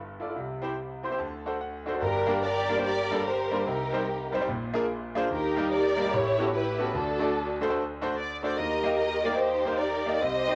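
A swung 4/4 pulse at 146 BPM drives this fervent, solemn gospel passage in G harmonic minor, cut from a longer piece, with a brilliant concert grand piano laying down deep-bass accompaniment from the start and playing a fill from 0.8 to 2.0 seconds. At 2.0 seconds a lush, bowed studio string section enters up front with the expressive, vibrato-rich melody, moving over changes such as Gm, Cm, Bb7, Eb, A13 and D. Both parts carry a cassette-tape character, and the home recording sits in a small room washed by a wet spring reverb.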